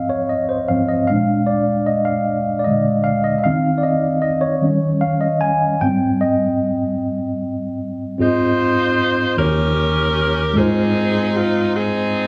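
A mellow tine electric piano carries this uplifting, jubilant gospel excerpt, its clean tone sitting up front as if heard through built-in speakers. It plays alone for the first 8.2 seconds, setting a slow 6/8 pulse at 51 dotted-quarter beats per minute in A-flat major and moving through rich chords such as Ab6, Bb7, Dbmaj9/Eb, Eb7 and Abmaj7. At 8.2 seconds a bright saxophone section enters with the melody, its jazz-style ensemble sound marked by vibrato and also placed up front. The piano continues beneath it through Ab6, Eb7 and Fm7/Ab until the cut at 12.3 seconds. Light reverb and a small room ambience give the whole a close, intimate setting.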